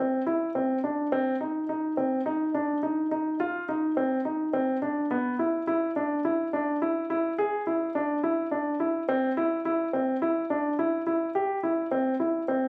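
A dark grand piano opens the recording alone and carries it from 0.0 to 12.7 seconds. This is a short cut from a longer progressive instrumental piece, set in C major at 106 BPM in a straight 7/4 that gives it an intricate, driving character. The piano stays in a compact middle register, from B3 to G#4, with a mellow tone and short sustain that keep its notes distinct. It sits up front in the sound, heard through a light club reverb. The recording has the informal quality of a phone capturing a performance in the room.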